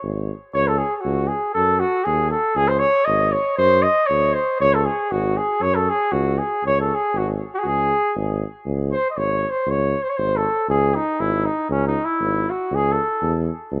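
The flugelhorn leads this restless, virtuosic Balkan folk piece, its punchy, warm tone sitting up front in a classical style while the hall reverb gives it a distant, roomy quality. It carries the melody from the start, set over a mellow tuba bass with light vibrato that also plays in a classical style. The music moves at 118 BPM in a straight 2/4, in C# harmonic minor, with the harmony circling back to C# between chords such as D#dim, D7b9 and F#5 before closing on A/C#. From 8.7 seconds the flugelhorn takes a solo, and it stops at 13.4 seconds while the tuba carries on to 13.8 seconds. The lush hall reverb and rough home-demo mix give this excerpt from a longer piece an informal, spacious feel.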